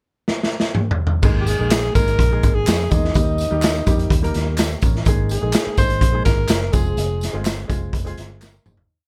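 A mellow tenor saxophone carries this joyful, danceable 1960s-style soul piece in Ab major at 125 BPM, playing a jazz-style solo of motif-based call phrases with vibrato, subtone and scooped notes from 1.4 to 7.5 seconds. It rides on a raw, gritty garage drum kit placed up front with a boomy kick, dark cymbals and a pumping small-room sound, which opens with a fill at 0.3 seconds before the verse arrives at 1.2 seconds. Round, foam-muted fingered electric bass plays a syncopated line with chromatic approach notes, while a present baby grand piano adds close-voiced rhythmic chords and short fills. Tambourine and group handclaps on the backbeat, along with maracas, sit in the background as the piece fades out.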